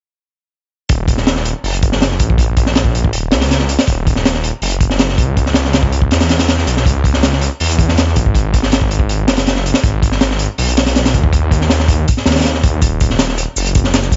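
Dark and atmospheric, this drum and bass excerpt with a jungle edge is driven by a thick, menacing detuned saw bass, beating and saturated up front, alongside a crunchy acoustic breakbeat kit with a punchy kick, high-tuned snare and a gritty, rolled-off top, both running from 0.9 seconds. At 12.8 seconds a second, sampler-style breakbeat kit slips in the background, overdriven and high-passed, adding compressed hi-hat, shaker and snare. The mix is dry and dull at the top, with little reverb.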